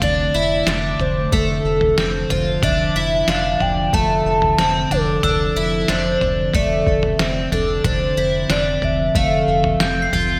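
Dream pop with a dreamy, ethereal mood, where a warbly, nostalgic lead sings over a detuned tape-like pad, shimmering octave-doubled twelve-string guitar arpeggios, a round analog bass, a muffled overdriven lo-fi sampler-style drum kit with gated reverb, and a sparkling glockenspiel with brass mallets entering at 5.2 seconds, all set in a lush hall with bright 1980s-style digital polish.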